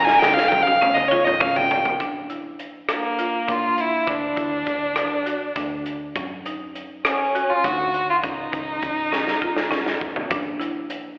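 Heard as a live gig through the venue's PA with a thin, telephone-like tone and a recital-hall reverb, this bright, intricate progressive instrumental excerpt moves in a straight 7/8 over chords such as Dbadd9, Bb and Gb5. A clear, focused violin sits up front with vibrato, soloing over a drum fill in the opening 2.0 seconds, while a buzzing, band-limited marimba played with hard mallets spins arpeggios beneath it, both carrying plate reverb and slapback echo. A dark, round fretless electric bass and a crunchy, saturated breakbeat kit with a tight kick and gritty, rolled-off top anchor the band, the drums returning with another fill from 9.1 to 10.3 seconds.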